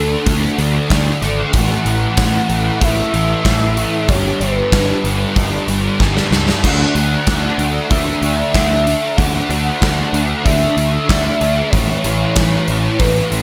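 A straight 4/4 pulse from a gated 80s drum kit, with punchy kick, bright cymbals and a polished stone-room sheen, arrives at 0.3 s alongside a thick, double-tracked fuzz guitar riff, a growling overdriven fingered bass and a mellow, round horn-like synth lead drifting through chorus, phaser and tape echo, giving this hazy, blissful shoegaze and dream pop rock fragment its glow, with a drum fill at 6.0 s before the chords settle onto Dadd9 and Aadd9.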